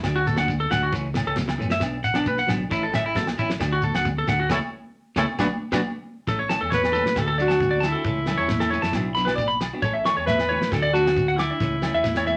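Joyful and warm, this excerpt of a highlife guitar band at 135 BPM in A major pairs an up-front twangy electric guitar playing bright picked arpeggios with a second slightly broken-up guitar in the background, a fingered electric bass, a damped 70s drum kit with a fat snare and tight kick, background agogo bells, congas and grainy shekere, all cycling through D, A/C#, Bm and A. A band accent runs from 4.5 to 6.3 seconds before a breathy, whispered and intimate alto saxophone with light vibrato takes the melody at 6.7 seconds, all set in a wet studio reverb.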